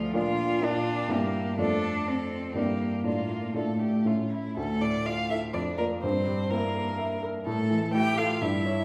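A quick classical-period movement for piano trio in triple time, this short passage cut from a longer piece has a stormy, dramatic mood. The violin carries the melody with a rich, smooth tone, its bowed line marked by vibrato and an even, silky top. The cello plays a second line beneath, bowed with vibrato, soft attacks and expressive portamento slides. The baby grand piano supplies the accompaniment with a warm sound that sits present and up front. The trio plays in a wet recital hall and is heard from further back in the room. The opening section moves through diminished and half-diminished chords, and a new section begins at 4.6 seconds, passing through another diminished chord before settling on A at the close.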